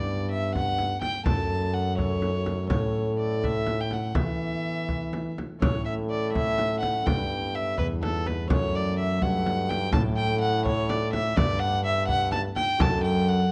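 Solemn and rustic, this renaissance-style consort dance in a straight 6/8, cut from a longer piece, sets an up-front, reedy gut-string violin melody in period style over ringing fingerpicked concert harp in the background and a bright trombone bass with light vibrato and a soft attack, while a deep frame drum struck with hard hands enters at 0.6 s, all captured by close, detailed microphones in a moderate recital-hall reverb.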